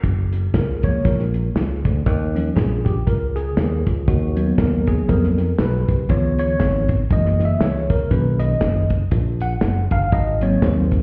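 A bright, bell-like tine electric piano takes the solo from 0.5 seconds over growly, punchy fingered bass and a dry, lo-fi soul drum kit with a tight kick, hi-hat and snare in this jubilant yet reverent uptempo gospel cut at 119 BPM with a swung feel in F# major, moving through rich seventh chords, the whole recording sounding muffled as if heard through a wall, with stone room reverb and small room ambience.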